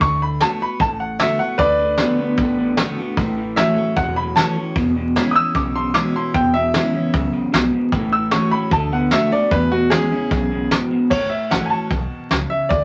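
Upbeat and rowdy, this 151 BPM rockabilly excerpt in A major puts a brilliant upright piano up front, soloing from the start to 11.1 seconds with audible action noise and long sustain, over a fresh-stringed dreadnought acoustic guitar, a thumpy pizzicato gut-string upright bass, and a brushed drum kit with a fat snare and tight kick, while a twangy, slightly broken-up electric guitar riff runs from 1.6 to 11.1 seconds, all set in a wet club reverb with vinyl crackle.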